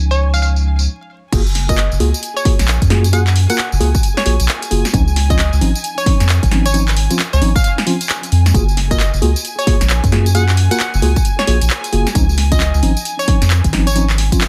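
Opening on a smooth, lightly vibrato-tinged violin section pumping softly in the background, mellow electric piano stabs through a low-pass filter and delay, and a round, up-front dub sub bass, this sunny, bouncy two-step UK garage excerpt adds a bright, hollow square pluck melody with chorus and delay and filtered house drums with a cracking snare, handclaps, tambourine, crash and swung hi-hats, halts briefly at 0.9 seconds, then drops at 1.3 seconds as a punchy electronic kick joins over major-ninth chords, the dry mix finished in a dense, heavily limited master with vinyl crackle.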